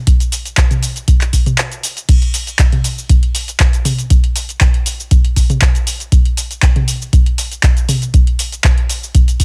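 A deep, dry electronic kick and a booming analog drum machine of claps, shaker, toms, crash and metallic hi-hats sit up front from the first moment of this driving, hypnotic house excerpt, moving through a short break at 1.6 seconds before the drop lands at 2.1 seconds inside a heavily compressed, radio-like digital ambience.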